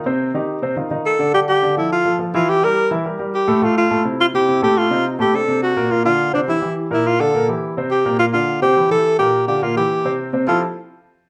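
A breathy, whispered alto saxophone leads this lively, sophisticated jazz excerpt in F major at 210 BPM, entering at 1.1 seconds with a close-miked, intimate tone full of vibrato, scooped notes and soft attacks. A warm concert grand piano with deep bass accompanies from the start, moving through jazz harmony such as Dmadd9, Gm69 and Fmaj9. Both instruments sit up front in a moderate large-studio reverb.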